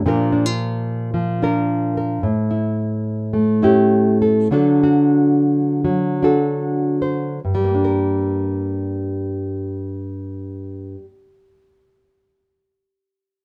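In a loose, rubato 4/4 that drifts between 70 and 111 BPM, this short folk excerpt features a single nylon-string guitar played fingerstyle, cut from a longer piece. The mood is intimate and reflective, set in G minor with tuning at A4 = 435 Hz. The guitar sits up front with a dark, full-bodied, deep classical tone, ranging from G2 to C5 under light reverb. Chords move from Bb through A7 to D, with the pace slowing between 2.2 and 7.4 seconds before the music settles on G minor at 7.4 seconds to open a second passage. The guitar plays alone throughout, from the start until 11.3 seconds.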